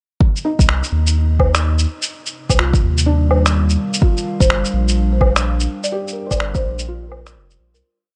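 A muffled, overdriven two-step kick opens this rainy, melancholic future garage piece at 0.2 s. The groove runs at 126 BPM in 4/4 with a 16th-note swing, in C minor. A soft, felt-muted upright piano scatters dark, intimate notes through dub echo, beside a skittering, shuffled beat of pitched-down shaker, low woodblock and finger snaps that sound compressed and re-recorded in a large room. A round, deep sine sub bass carries a dub-style line up front, and it pumps against the kick, as do the piano and a warbling, lo-fi pad of slowly shifting chords soaked in chorus and reverb. The harmony moves from Cm11 to Gm7 at 4.0 s, and at 4.4 s a woody, dry marimba played with soft mallets adds short, rustic phrases through tape echo. The digital ambience keeps the whole piece dim and hazy, and a fade-out begins at 5.3 s.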